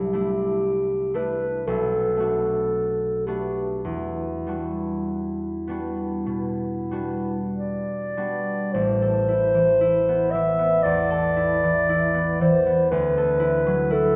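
A wet concert-hall reverb with a 2.2-second decay surrounds this short cut from a longer classical piece, a wistful, hazy impressionist duo for clarinet and concert harp. The tempo moves freely in rubato between 44 and 62 BPM in 4/4, beginning in E minor and shifting to A minor at 8.7 seconds. The clarinet carries the melody from E4 to E5 in a solo classical style, its tone dark and distant, yet placed up front. Beneath it, the harp plays a fingerpicked, ringing accompaniment from A1 to A4, acoustic and warm and also up front. Both instruments play throughout the 14.2 seconds, over a chord progression of C69, Bm7 and Em9 that later turns to Amadd9 and Dadd9.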